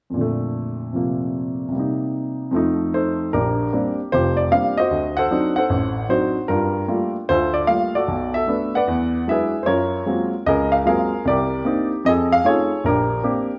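A baby grand piano plays alone with a warm, natural tone, swinging through a short, sophisticated and playful solo jazz passage cut from a longer piece. Its lines span from deep in the bass up into the upper middle register, moving through rich extended harmony such as Bb69, Gm9 and Gbmaj9#11 before settling back on Bb69 near 12.8 seconds. A wet, large studio reverb surrounds the up-front instrument with a spacious room sound.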